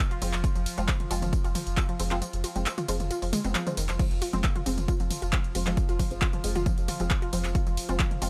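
A relentless, hypnotic peak-time techno groove drives at 135 BPM in straight 4/4 in F minor, built on an overdriven, punchy electronic kick sitting up front that drops out from 2.2 to 4.0 seconds, while a punchy, overdriven analog drum machine of hi-hats, handclaps, tambourine, toms, ride and crash pumps against it. Beneath, a thick, saturated sub bass holds F1 under a mellow, warbling drone, as a bright, detuned sawtooth pluck riff with delay weaves through muted, phased dub chord stabs carrying 12-bit sampler grit. The mix is dry and close, with sidechain pumping breathing through every synth layer of this brief cut from a longer track.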